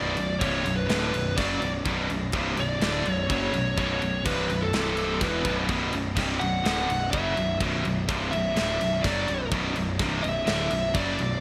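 Heavy metal in B minor at 125 BPM, relentless and dark, this excerpt rides a half-time feel as a dark, distorted lead guitar carries the melody with delay over three bright, distorted rhythm guitars, one set in the background and two very quiet, one of them double-tracked, all churning low riffs. A growly, fuzz-overdriven picked bass anchors the bottom, while a tight metal kit with a big-room, mid-forward sound, medium-tuned snare and gated reverb drives kick, snare and crash from 0.2 seconds. The harmony sits on Bm with a brief move to C5 at 4.7 seconds, all framed by a lush hall reverb and bright 1980s-style digital production.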